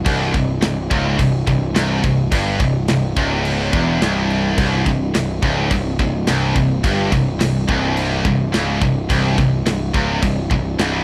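Heavy metal in straight 4/4, this short cut from a longer piece feels relentless and heavy, built on a single C5 power chord that holds for the full 11 seconds. Up front sits a growly, fuzz-laden picked electric bass, overdriven and amped, carrying the low end of the riff. Two bright, high-gain guitars with distortion play the riff further back in the mix, joined by a very quiet, double-tracked sludgy guitar whose overdriven tone adds a warm undercoat. A tight metal drum kit drives the part with a tight kick, a medium-tuned snare and bright crash cymbals, sitting mid-forward. The sound is dry and close, in the manner of a 1970s studio session in a small room.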